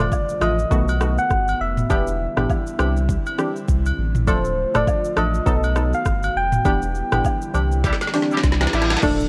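Through a worn, warbling cassette-tape haze, this smooth, hypnotic afrobeats excerpt at 101 BPM rides an up-front electronic drum kit with deep kick, woody snare and metallic hats, a round sine sub bass, a glassy crystalline wavetable pluck, a gentle FM keys-like lead with vibrato, and a breathy pad in the background, joined by close agogo bells and woodblock, very quiet impact and reverse cymbal effects, and a clear vintage horn section that arrives at 7.8 s over a drum fill and band accent.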